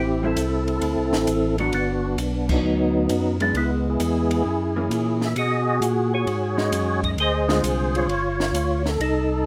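Opening at once on a mellow, round, percussive tonewheel organ melody with third-harmonic percussion over a fat, lightly overdriven organ bass with key click, both up front through slow rotary speaker and chorus vibrato, this late-night, smoky soul jazz organ trio excerpt swings at 132 BPM in 4/4, joined by a dark, clean, compressed hollow-body electric jazz guitar accompanying from 0.2 seconds and a dry, compact cocktail drum kit with shadowy cymbals, high-tuned snare and punchy kick from 0.4 seconds, set in a moderate club reverb, with a band accent at 2.4 seconds as the harmony moves from Am7 through Gmaj7, Dbm7 and B69 to a closing G5.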